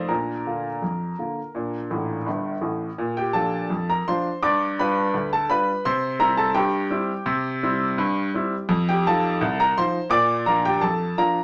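Cheerful and playful, this short passage of ragtime piano, cut from a longer piece, moves at 84 BPM in 2/4 with a straight feel in Bb major. A single upright piano carries everything alone, ranging from G1 up to D6, and its sound is clear, woody and intimate, with audible action noise and long sustain placed up front in the mix. The opening phrase settles on Bb, and the piano adds a fill from 1.9 to 3.0 seconds before a new section begins at 3.0 seconds. From there the harmony travels through G7, C7 and F7 before landing back on Bb at 10.1 seconds. A wet studio reverb with a short 0.5-second decay gives the polished, present instrument a sense of room while keeping it close to the listener.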